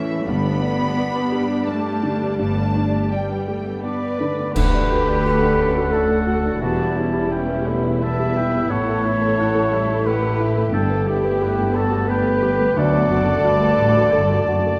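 A mellow solo clarinet stands out in this tender, uplifting cinematic piece in a rubato 3/4, joining at 3.8 s alongside an airy, hollow flute, with a distant cor anglais following at 4.6 s, over a con sordino string bed of dark, veiled violins carrying the melody and a second line, with violas, cellos and double basses beneath, a warm grand piano in the background, very quiet French horn chords, and a close, dry accent of bright clash cymbals and concert bass drum at 4.6 s, set in a moderate scoring-stage reverb.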